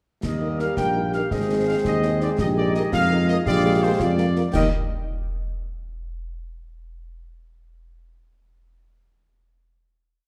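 A mellow tuba sits up front with light vibrato, holding the bass on the beats in this proud, spirited military-style march for wind band in 6/8 at 112 BPM in Eb major, while a clear, close-miked trumpet section carries the melody and a warm, distant euphonium adds a counter-melody in the background. A dark woodwind section and a bright trombone section hold tight sustained chords, a very quiet French horn section joins at 0.4 seconds with after-beat chords, and close, dry drums set a marching snare over bass drum on the beat with dark cymbals. The short whole piece moves from Eb through Ab and a Bb7sus4 resolving to Bb7 before landing on a final Eb chord at 4.5 seconds, all set in a moderate scoring-stage reverb with a dark production.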